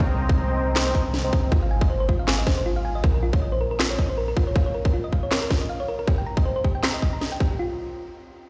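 Future bass at 158 BPM in 4/4 with a half-time feel and a light 16th-note swing, this lush, bright fragment of a longer piece opens on a Cm7 chord. Huge, detuned supersaw chords carry the riff under a filter sweep, cassette-tape coloring, digital delay and sidechain pumping, while a shimmering, ethereal pad sustains very quietly beneath with octave-up granular sparkle. Both drop away at 1.5 seconds, when a round, tine-like FM pluck takes over with gentle arpeggios, roughened by 12-bit sampler grit and softened by chorus, delay and its own pumping. A deep, boomy 808-style bass with a sine core anchors the low end until 4.5 seconds, as the harmony moves through Ab5 and Ebsus2 back to a rootless Cm7. Up front, a hard-clipped, overdriven kick and a sharp snare layered with handclaps drive the groove, re-recorded in a small room, and the whole mix sits in a large, bare-room studio reverb.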